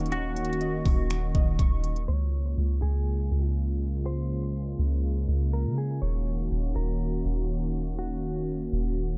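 The recording is dark and dry, its filtered sound giving this atmospheric cloud-rap excerpt a floating, blissful mood at 122 BPM in a half-time 4/4 feel, in D-flat major. A smooth, detuned sawtooth pad sits up front with chorus and sidechain pumping, holding sustained chords from Ebm7 to Db6 and back to Ebm7 at 6.0 seconds, while a round, sine-like 808-style bass anchors the low end throughout. For the opening 2.1 seconds, a trap kit with a knocking kick, crisp hi-hats and finger snaps drives the groove alongside warbling, nostalgic lo-fi synth keys playing arpeggios through chorus, delay and a low-pass filter. A clean, fingered semi-hollow electric guitar carries a warm, filtered melody with delay from 0.1 seconds on. From 2.1 seconds a filter sweep colours the rest of the passage as the pad, bass and guitar float on together.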